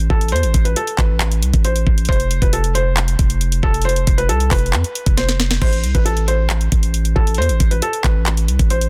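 A felt-muted upright piano carries a soft, mellow melody with audible action noise and short sustain, while a deep, sine-toned 808-style bass with a fast attack sits up front beneath it, opening this menacing, hard-hitting half-time trap excerpt. From 0.1 seconds a produced electronic trap kit joins with a knocking kick, sharp snare, bright hi-hats, handclaps and crash cymbal, tape-tinged and forward, adding a drum fill at 5.2 seconds as the harmony moves from A minor to an F power chord and back. The sound is dry, with a dense, heavily limited modern master.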